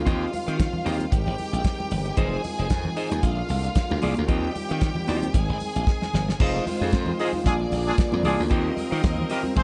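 A glassy, punchy slap bass sits up front in this glamorous, danceable disco excerpt, joined by a dry, damped 70s drum kit with a tight kick, a clean, dark fingered electric guitar, and soft-handed congas ringing in the background. A lush, biting string section carries a second line over sustained chords from a classical-style French horn section, moving through Eb69, Abmaj7, Fm7 and Bb7 with light reverb. After a drum fill at 5.9 seconds, a distant, roomy pop-style horn section adds stabs from 7.2 seconds.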